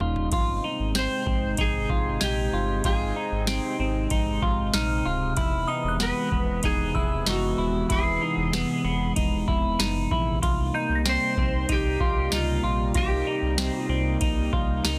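A clean lap steel guitar played with a slide carries the melody from 1.0 seconds in this blissful, dreamy dream pop excerpt at 95 BPM in Ab major, over a booming analog drum machine with deep kick and crisp snare, a hollow-bodied semi-hollow electric guitar fingering arpeggios through subtle chorus and delay, a smooth sawtooth pad holding chords through Abmaj7, Emaj7 and Cm7, a full sine sub bass with octave, and a glassy, warbling synth bell shimmering in the background, all in light reverb.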